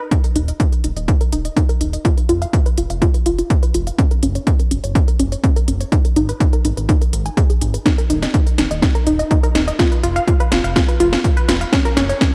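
A warbling, dusty pluck arpeggio with chorus, tape echo and sidechain pumping opens this hypnotic, melancholic melodic techno excerpt at 124 BPM in Eb minor, joined from 0.1 s by an up-front, punchy analog kick and an overdriven kit of cracking snare and smooth hats in a small room, then a fat, detuned, saturated sawtooth bass pumping underneath, as a filter sweep on the arpeggio drives a build-up over chords moving from Eb5 through Gb and Abmadd9 toward a drum fill at 7.9 s, captured as a gritty cassette-tape recording with light reverb.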